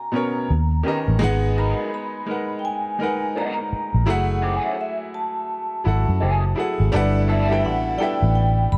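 The rhythm sits in a relaxed 84 BPM groove in 4/4, with a lazy 16th-note swing that gives this short neo-soul R&B excerpt a sensual, unhurried feel. A bright grand piano with brilliant, short-sustained chords plays up front from the start, while a vibraphone carries the melody in a dark, smooth voice with a fast motor vibrato and tape echo on its ringing metallic tone. At 0.5 seconds a vintage muted fingered electric bass joins, round and foam-muted, sitting prominently under the harmony as it moves through lush extended chords like D#7b13, G#m9 and F#m9. An electric guitar through a small old amp adds a slightly broken-up, lo-fi second line with wah and spring reverb before dropping out at 7.6 seconds. At 6.9 seconds the harmony shifts to Gmaj13 and a tight, jazz-style horn section enters with stabs tucked in the background. A small room ambience and dark production keep the mood intimate.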